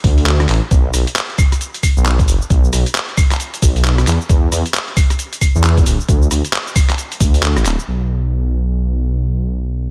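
The rhythm moves in a skippy two-step garage groove, its sixteenths pushed into a moderate shuffle that gives this late-night cut a bouncy gait. A thumpy electronic kick, pitched down, compressed and gritty with a tape-warm edge and a touch of studio reverb, anchors the pulse until 7.3 seconds. Around it, a sampler-style kit of handclaps, rim clicks, hi-hats, shaker, claves and crash cymbal sits lower in the mix, its hats, cymbals and percussion dulled by low-pass filtering and set in studio reverb. Beneath them, a dark detuned saw bass rumbles up front, its unison sawtooth layers beating against a sine core, saturated and sustained with a fast attack. Once the kit falls away at 8.0 seconds, the deep bass carries on alone until the fragment ends.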